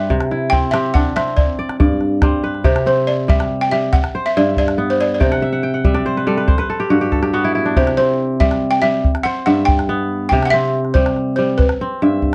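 A dark, warm production places the instruments in a small room with a wet reverb, the sound of a joyful, flowing piece of West African traditional string and xylophone music in 12/8. The fingerpicked kora is up front, its ringing, crisp arpeggios spanning from low to high register, and it plays a fill from 5.2 to 7.8 seconds. Alongside it, the balafon carries the melody on rubber mallets, its woody, buzzing tone heard up front and dry. A small acoustic calabash, close and dry, joins at 0.1 seconds and keeps the percussion going. The harmony alternates steadily between C and G as the brief opening passage gives way at 2.6 seconds to a longer section that runs to the end of this excerpt from a longer piece.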